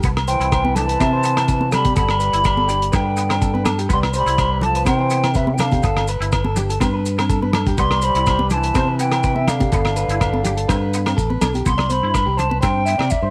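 Joyful and carefree, this highlife guitar band clip moves in a straight four, swaying between C major seven and G chords before a G seven leads into a brief closing turn at 11.7 seconds. A hollow concert flute carries the melody with tongued notes and vibrato, while a bright trombone plays a distant, roomy second line that drops out at 11.2 seconds. Underneath, a slightly broken-up electric guitar picks compressed arpeggios through tape echo, and a clean, twangy electric guitar with ensemble chorus picks out accompaniment in the background. The fingered electric bass sits direct and up front, joined by a cloth-damped drum kit whose muffled, gritty hi-hat, tight kick and rim clicks keep the pulse. High-tuned congas with a thin skin, ringing agogo bells and grainy maracas fill out the percussion, all set in a small room with the lo-fi character of a home cassette recording.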